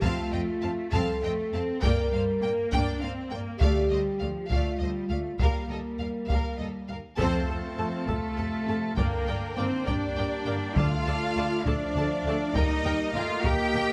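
This epic, dramatic orchestral film-score passage opens all at once: a compressed, saturated taiko ensemble struck with hard sticks drives beneath lush, bowed strings in a rolling 6/8 metre. Two violin lines with vibrato carry the top, the melody focused and the second line smooth and even, while the violas sit in the background and the cellos add a rich bass with light vibrato. Double basses with a soft attack anchor the low end, and a dark, distant French horn section holds sustained chords. Close timpani with medium mallets mark a single note at 3.6 seconds and return near the end. A band accent at 7.2 seconds opens the second half, where a nasal organ cornet solo stop with tremulant joins the sustained chords, and a very quiet, tight trombone section follows at 7.8 seconds. The harmony cycles through F, G minor, D minor and E-flat, all set in a moderate scoring-stage reverb, and the music is cut from a longer piece.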